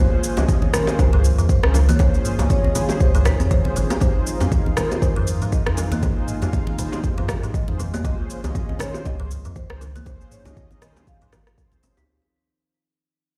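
A deep, tape-warm electronic kick drum sits up front in this earthy, hypnotic afro house excerpt at 119 BPM with swung 16ths, entering at 0.5 s over a round sine sub bass and a produced afro-pop kit of rim click, shaker and toms. Bright, dry congas and tight, high-tuned bongos stay in the background, while a soft-mallet marimba carries the mellow melody with delay, a woody kalimba plucks arpeggios, dark, detuned sawtooth synth brass adds chorused stabs with vibrato and a filter sweep, and a smooth analog pad holds sustained chords, with the pad, kalimba, brass and bass each pumping with the sidechain. The drop moves between Dbmaj7 and Fm7 and fades out from 4.0 s, and the mix sounds like a big sound system playing in a bare stone room.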